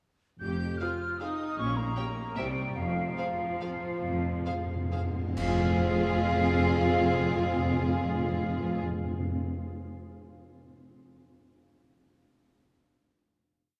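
Drenched in a vast, echoing cathedral reverb, this complete orchestral ballroom waltz in F minor sways in 3/4 with a rubato feel between 128 and 166 BPM, bittersweet and sweeping, slowing from 2.2 to 5.4 seconds before an ensemble accent at 5.4 seconds lands on a held final chord. Airy flutes carry the melody over a clear, vibrato-rich violin section and lush second violins playing after-beat chords. Focused violas double the tune at the octave, bright cellos and smooth-topped double basses anchor the bass on the beats, dark French horns sustain chords in the background, and hard-mallet timpani play single strokes and a fill, joined midway by cymbal swells, crashes and concert bass drum strokes.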